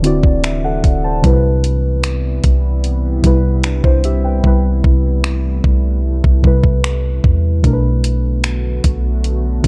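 A dark, warm production with little reverb frames this sensual, longing contemporary R&B excerpt in A dorian at 75 BPM, where muted, felt-like synth keys with a soft chorus shimmer carry the chords from D13 through Cmaj7 and Am9/C to Bm7. Beneath them a deep, moody ambient pad of detuned sawtooth unison with a sub octave sustains in its own reverb, while a boomy, sine-pure 808-style bass sits up front. A thumpy, sampler-style 12-bit drum machine drives the groove with kick, finger snaps and hi-hat, the hi-hats dropping out between 4.4 and 7.6 seconds.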